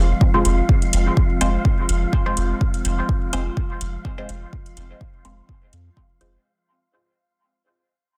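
A dense, heavily limited modern master with light digital ambience frames this short, meditative dub techno excerpt, cut from a longer piece and fading out across its 6.4 seconds. At 125 BPM in 4/4 with a gentle 16th-note swing, it rests on a single F minor chord, giving it a hypnotic, static pull. An up-front electronic kick, deep and tape-tinged after re-recording in a small room, enters at 0.2 s. It sits over a round, soft dub sub bass that also stands forward in the mix. An overdriven, metallic analog hi-hat, re-recorded in a large room, arrives at 0.5 s. Muted, mellow chord stabs with a filter pluck, a phaser and dub echo drift through the groove. Beneath them, a warbling, nostalgic lo-fi pad with chorus and reverb holds sustained chords, and an airy, breathy wind-like noise layer hovers high and dark. The pad, bass, stabs and texture all pump against the kick.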